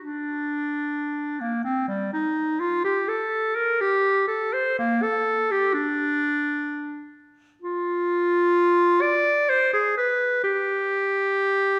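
Set in a slow 3/4 at 63 BPM, the rhythm breathes freely in a rubato feel, stretching and yielding like a spoken phrase. This is a classical, baroque-style fantasia for unaccompanied clarinet, and its mood is grave and introspective. The single clarinet plays alone throughout the 11.8 seconds, moving between G3 and D5 with a bright tone and soft, gentle attacks in a classical manner. It sits up front, while a wet recital-hall reverb with a 1.5-second decay surrounds it, the room captured from further back so each note lingers in the space. Tuned to A4 = 439 Hz, the passage is cut from a longer piece and feels like a single unbroken section of solitary reflection.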